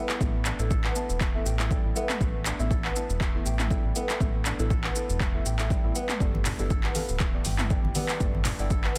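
A fingerpicked kora sets the tone of this warm, spiritual afro house fragment, its ringing, crisp arpeggios softened by a low-pass filter, trailed by delay and breathing with sidechain pumping. Beneath it, a deep, mellow chord stab built from wave-folded triangle, sawtooth and sine tones sounds short and soft, colored by chorus, phaser and delay as it holds a single Gadd9 chord throughout. A punchy, overdriven electronic kick anchors the pulse, while a layered deep house kit adds handclaps, metallic hi-hats, shaker and toms with a gently swung feel. A round, dark analog bass, detuned and sustained with a fast attack, sits low and pumps against the kick. At 6.3 seconds thick-skinned, medium-tuned congas slip in at the back of a small room, all inside a dense, heavily limited modern master with a digital ambience.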